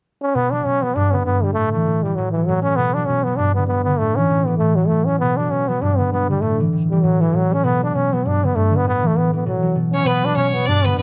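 Wild and driving, this Celtic folk excerpt moves at a brisk 197 BPM in 4/4 with a swung eighth-note feel, set in B minor and cut from a longer piece. A trombone with a straight mute carries the melody from the start, its bright, nasal tone played in a classical style with light vibrato, sitting up front as the solo voice in its low-to-middle register. Beneath it, a concert harp provides thumb-plucked accompaniment, its acoustic, ringing low strings supporting a cycling progression built on B, G and A chords. Near the end, at 9.9 seconds, a single fiddle enters with an intense second line, its clear tone marked by an airy bow and light vibrato. The parts are captured with close, detailed microphones in a small room whose moderate reverb keeps the sound intimate and present.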